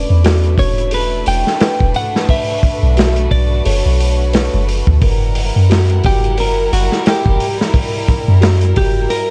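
A crunchy breakbeat kit sets a swung, unhurried trip hop groove in 4/4, its tight kick, medium-tuned snare and hi-hat sounding saturated and gritty with a rolled-off top, placed up front from 0.2 seconds. Beneath it, a soft 808-style bass gives deep, round, sine-like notes with a fast attack that decay away, also sitting close. A clean, picked electric guitar carries the brooding melody in a dark, compressed tone touched by tape echo. A bright violin section holds sustained chords with light vibrato and a biting intensity, while a delicate music box tinkles airy arpeggios through tape echo in the background. The harmony moves from E7sus4 to Bm7 and then to F#7b9, and the small-room ambience, dark production and vinyl crackle give this cinematic fragment of a longer piece a dusky, intimate feel.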